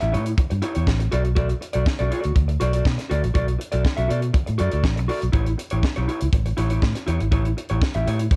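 A tight, straight disco drive from a high-tuned snare, hi-hat and tight kick sets a sultry mood, with a round, amped fingered bass up front alongside the drums and a slightly broken-up, lo-fi electric guitar through a small old amp tucked lower in the mix, all moving through A7 and Bm7 in a dark production with light small-room reverb, cut from a longer piece.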